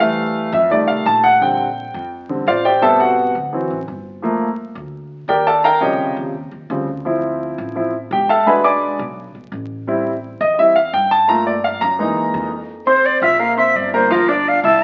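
A straight, danceable 4/4 jazz excerpt with a sunny mood, in which a warm, natural, up-front grand piano solos over woody pizzicato upright bass until 12.7 seconds, after which a breathy, bright concert flute with a tongued, unsteady straight tone enters up front at 12.9 seconds to take the melody, set in a wet large-studio reverb with the crackle of a very old 78 rpm record.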